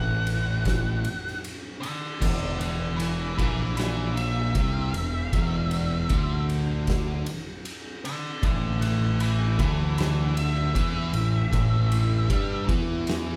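Stoner and doom metal at a hypnotic, sludgy 77 BPM, this short cut opens on an unchorded stretch before settling onto E5 at 2.2 seconds and A5 at 8.4 seconds, while a dark octave-fuzz lead guitar solos through the whole span until it stops at 12.6 seconds. Beneath it, a bright, double-tracked fuzz guitar sits in the background alongside two very quiet thick fuzz guitars, one mellow and one murky, all grinding out the low riff, while a round, punchy overdriven bass stays up front. An oversized, low-tuned acoustic kit with a fat snare, punchy kick, crash and ride pumps in a gritty, saturated stone-room sound, and the whole band plays live in one room under a moderate large-studio reverb.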